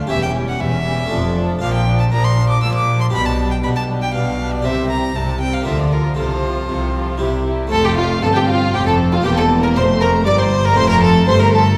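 Heard from further back in a reverberant recital hall, with a 1.6-second tail, this period-style chamber string band and harpsichord sounds richly wet. It is a lively, festive excerpt from a baroque-style concerto movement in F major, moving at 118 BPM in a straight 3/4. A solo violin with a rich, reedy gut-string tone carries the melody from 0.1 s, sounding close at hand. A violin section also plays the melody in the background, while a second violin section takes an inner line and a dark, distant viola section fills out the harmony. A double bass section, the most prominent layer, and a nasal-toned cello section anchor the bass, while a round, dry, closely miked harpsichord adds plucked accompaniment. The harmony moves through passing chords to a cadence on C, then a new section opens on F at 7.7 s and returns home to F by 10.8 s.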